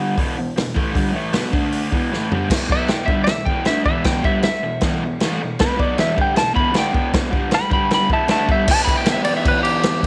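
Raw and gritty, this garage rock cut drives along at 155 BPM in a straight 4/4 in E minor, opening on a double-tracked, overdriven electric guitar riff that sits up front. A vintage acoustic drum kit with a punchy kick, medium-tuned snare and dark cymbals joins at 0.2 seconds and plays a short fill just before a clean, compressed lap steel slide melody enters at 2.7 seconds, its shadowy tone trailed by tape echo. Light reverb gives the whole a natural small-room feel.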